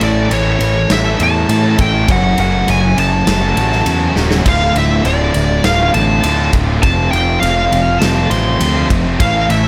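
A dark, high-gain lead guitar sits up front carrying the melody, joined by a punchy, bright fuzz bass that is equally forward, in this angsty, cathartic quiet-loud alternative rock passage at 101 BPM, cut from a longer piece. Beneath them, a double-tracked fuzz guitar and a brighter overdriven guitar play riffs in the background while a very quiet, thick fuzz guitar adds a murky layer, and a big acoustic drum kit with a tight kick, medium-tuned snare, crash and ride rings in a stone-room sound, with a fill at 4.2 seconds. The chords move from A to F#m, Dm and F under light reverb and studio ambience.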